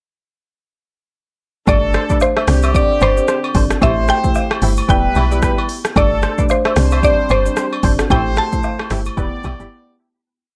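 A 112 BPM afrobeats groove in 4/4 swings its sixteenths, with an up-front drum kit built from a deep kick, crisp hats, syncopated rim clicks and shaker, roughened by vintage 12-bit sampler grit, while agogo bells and woodblock tap out a bell-and-wood timeline. Underneath, a punchy log drum bass bounces through a syncopated line, and a marimba with medium mallets adds dark, smooth syncopated chords over a cycle of Gsus2, Csus2, Am7 and Em7 in A minor. A round, chorused synth pluck carries the melody in motif-based call phrases, and a clear horn section holds long swelling notes as a second line. Further back, a bright, twangy clean electric guitar repeats an interlocking figure doubled in thirds, coloured by ensemble chorus and tape echo. The hypnotic, mellow piece is a single chorus that enters at 1.7 seconds, begins fading at 8.1 seconds and closes on a brief break, all captured in a dry, gritty hardware sound.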